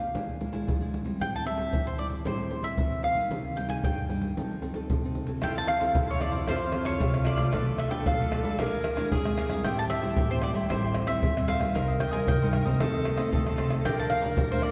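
A joyful, sunny samba-choro opens on a round, picked mandolin melody up front, over a full-bodied, fingerpicked nylon-string guitar with audible finger squeak and a tight surdo, pandeiro, egg shaker and tamborim struck with hard hands. At 5.4 seconds a breathy, whispered tenor saxophone with vibrato adds an intimate second line, while a crisp, bright cavaquinho and a woody, thumpy pizzicato upright bass join in the background. The recording sits in a long church reverb and is cut from a longer piece.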